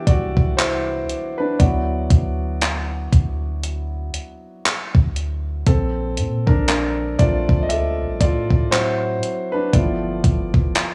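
This dry, gritty hardware recording carries a small-room ambience around a romantic, dreamy piece of contemporary R&B, cut from a longer track. It moves at a slow 59 BPM in 4/4 with a 58% swing on the sixteenths, set in D mixolydian. A warm, intimate concert grand piano carries a solo across the whole 10.9 seconds, polished and present, with audible action noise and a deep low end. Beneath it, a soft 808-style bass enters at 0.1 seconds, round and dark, its sine tone striking fast and then decaying. A gated 80s digital drum machine sits up front with handclaps, hi-hat and a thumpy kick, its sampler-style sound tape-tinged, re-recorded in a small room and bathed in gated reverb. The harmony drifts from Cmaj7 through D69 and Bbmaj9 to D7 and G13.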